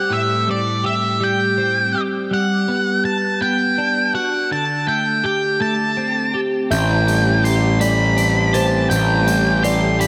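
A dark octave-fuzz lead guitar sings the melody over bright, twangy twelve-string electric arpeggios colored by chorus and delay, moving through Am7, Gmaj7 and D7sus4 in a slow 55 BPM 6/8 post-rock excerpt that feels euphoric and soaring, until at 6.7 seconds a growly, punchy fuzz bass, a mellow felt-muted upright piano with audible action noise in the background, and a natural hi-hat join, all bathed in a lush hall reverb for a big arena sound.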